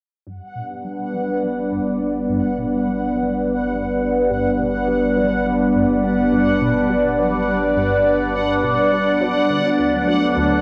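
Ambient, sequencer-driven space music at 104 BPM in G major, cosmic and expansive, where a swirling, airy phased analog pad holds sustained chords up front from 0.8 seconds while a juicy, squelchy resonant blip pluck riff with tape echo fades in from the background alongside a deep, dark analog bass, a bubbling stepped-filter texture with chorus hovers high above, and the mix, soaked in dreamy plate reverb with a cassette-tape character, moves from G to D.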